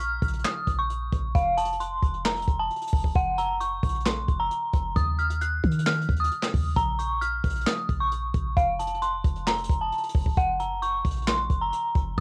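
A half-time trap groove in 4/4 rolls along on a jazz brush kit, with a boomy kick, a medium-tuned snare, handclaps and hi-hat caught up front in a small room with a cassette-tape grit. Underneath, a clean sine 808-style bass sits deep and dark, each note striking fast and then decaying, while an eerie, inharmonic FM bell carries the melody up front, detuned and mellow, with chorus, tremolo, a low-pass filter, tape colour and plate reverb. The brooding chords circle through Bbm, F, Gb and Ebm in this home-recorded cassette cut from a longer piece, all three parts playing throughout its 12.2 seconds.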